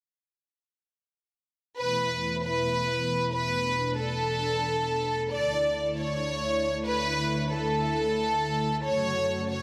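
Euphoric yet bittersweet, this trance passage at 136 BPM in a straight 4/4 is cut from a longer piece, and both parts enter together at 1.8 seconds and carry on to 9.6 seconds. An analog string pad holds sustained chords with a soft attack and a silky, sawtooth-edged sheen, thickened by ensemble chorus and vibrato, while a filter sweep and a moving notch shift its colour. Above it, a studio violin section plays a second line with a pure, floating bowed tone, its notes trailed by delay. Both parts sit up front, though the violins are mixed louder than the pad. The harmony moves from Esus4 to Dsus2 and lands on F#m, and the whole passage is bathed in a huge, wet ambient reverb with a tail of 6.7 seconds.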